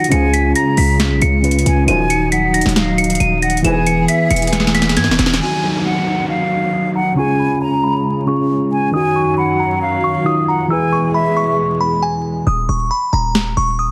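A delicate, tinkling FM bell melody with chorus and phaser opens this dark, brooding trap excerpt at 136 BPM in half-time and Eb minor, alongside a pure, hollow flute line, a worn, slightly out-of-tune electric piano, lush bowed strings, and an overdriven drum machine with crisp snare and metallic hats, while a punchy 808 bass and distant, mellow brass stabs enter at 0.1 s. After a drum fill, the drums and bass stop at 5.4 s as an electronic downlifter and a filter sweep carry the middle over Ebmadd9, Db and E chords. Vinyl crackle sits beneath a dense, heavily limited master, and the 808 returns at 12.5 s with the hats muted for the closing moments.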